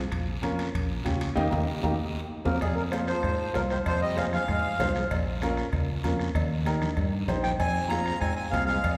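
A straight four-beat cumbia groove drives this fiery, passionate clip, built on a soft-beatered bombo, raspy close guiro, bright high-tuned congas and ringing timbales with cowbell set back in the mix. A dark, woody upright piano and a round fingered electric bass carry the chords, and the band hits an accent capped by a drum fill as the reedy, smooth accordion takes the melody up front at 2.5 s. A bright trombone with vibrato sits distant underneath it as a second line, the whole performance bathed in a long church-like reverb.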